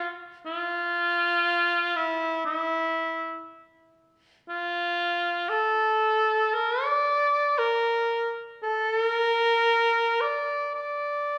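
A clear cor anglais sings alone and up front from the first moment to 11.4 seconds, shaping an unhurried, rubato line between E4 and D5 with light vibrato and a classical poise. The mood is calm and austere, in the manner of Japanese traditional chamber music, and the passage is cut from a longer piece. A wet recital-hall reverb with a small-room ambience surrounds the solo.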